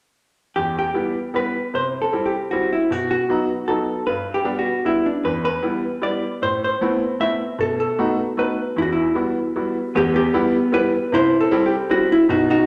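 Opening at 0.6 s, a vintage hollow-body electric jazz guitar carries a dark, clean, compressed melody up front over a bright, woody, slightly detuned upright piano accompaniment in this nostalgic, bittersweet musette waltz in E minor at 154 BPM, steered through chords like Em, Amadd9 and B7 and bathed in a wet, large studio reverb, cut from a longer piece.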